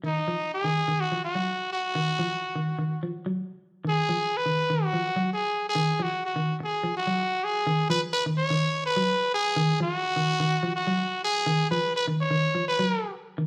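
Afrobeat at 126 BPM with an intense, driving mood, this short cut from a longer piece sets a clean, picked electric guitar playing up-front arpeggios over a D#madd9 chord beneath a raspy, growling solo trumpet that carries a brilliant, punchy pop-style melody with light vibrato, the band heard playing live together in a large studio with a wet, lingering reverb as the music shifts into a new section at 7.7 seconds.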